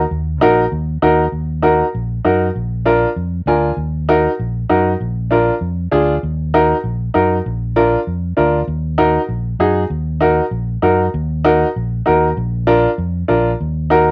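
Danceable and driving, this short cumbia cut moves at a brisk 196 BPM in 4/4 with a straight feel, set in E-flat harmonic minor. A fingered electric bass opens at 0.0 seconds with a dark, round, amped tone sitting up front in the low register. The upright piano joins at 0.4 seconds as accompaniment, its woody, intimate sound carrying audible action noise and short sustain, colored by cassette tape. A brief piano fill arrives at 3.3 seconds, and the harmony rocks between Ebm and Bb7, later settling on plain Bb before resolving to Ebm. The home cassette recording places both parts close in a moderate studio reverb, and the fragment itself is lifted from a longer piece.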